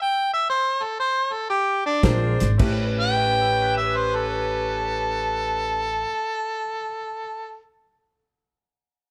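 A moderately reverberant studio sound frames this swaggering, soulful electric blues shuffle fragment, which opens with an up-front, mellow harmonica carrying overdrive, light vibrato and scooped notes as the pace slows and it plays alone for the first 2.0 seconds. The band then arrives on a Bb9 chord: a bright upright piano with audible action noise sits in the background, a distant, roomy saxophone section adds tight stabs, and a woody, growly pizzicato upright bass holds the low end. A smooth soul drum kit with punchy kick and dark cymbals plays only until 2.8 seconds, shortly after the harmony moves to A9.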